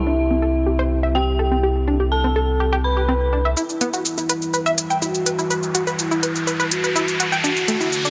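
Dramatic and melancholic, this fragment of melodic techno at 124 BPM in E minor opens with an expressive, mellow synth lead carrying the melody over a moody detuned pad, a round analog bass with tube saturation, an eerie inharmonic FM bell and a tight, driving sequenced arpeggio, before the bell and bass drop out at 3.5 seconds and up-front electronic shaker and hi-hat arrive for a build-up where filter sweeps move across the lead and pad and a riser climbs in from 5.1 seconds, all set in light digital ambience as the chords shift from C to Em to D.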